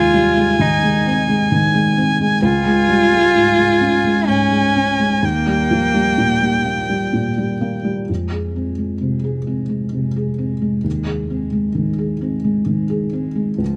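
This neoclassical piano-and-strings fragment, cut from a longer piece, carries a longing, melancholic mood, moving in a gently rubato three-beat lilt. A felt-muted upright piano sits up front as the accompaniment, its thick-felt tone soft, mellow and vintage, with the audible clatter of its action adding an intimate, close-at-hand quality. A single bowed viola, also up front, shares the accompaniment with an airy, sul tasto sound and vibrato, holding a narrow high register before falling silent at 7.9 seconds. A lone cello carries the second line through the whole passage, woody and shadowed, bowed sul tasto with vibrato. The harmony moves from Ab/Eb through Db and Eb, then turns to F minor at 8.1 seconds as the music enters a new section before coming back to Ab/Eb. Close, detailed microphones and a light reverb keep the sound near and personal.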